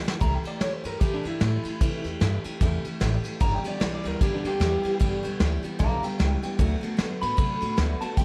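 A swung 4/4 shuffle at 151 BPM drives this upbeat, rollicking rockabilly excerpt in G major, with a vintage brush drum kit opening on a fill and keeping a dark, punchy groove up front alongside a woody, thumpy pizzicato upright bass and a bright, full-bodied picked acoustic guitar. A twangy, slightly broken-up electric guitar through a small old amp carries a clean solo from 0.2 seconds, bathed in lush chorus and tape echo. At 3.4 seconds a second electric guitar adds a low riff in the background with spring reverb, over chords moving from C6 to G6 to D6 in a small, intimate room.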